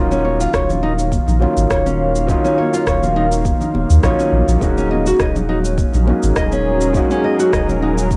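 Hypnotic and mystical, this brief excerpt of organic downtempo sits at 103 BPM in Eb minor, with a lightly swung sixteenth-note feel resting on a single Ebm9 chord. A soft, felt-muted upright piano and a round sine sub bass sit up front, while a smooth, warbling analog pad holds detuned chords beneath, both pad and piano pumping with sidechain and coloured by cassette tape. A dark, fingerpicked nylon-string guitar with audible finger squeak plays arpeggios through tape echo and plate reverb, as tape-worn electronic cabasa and rim click, very quiet ringing congas and a deep electronic kick joining at 0.5 seconds complete the homespun groove.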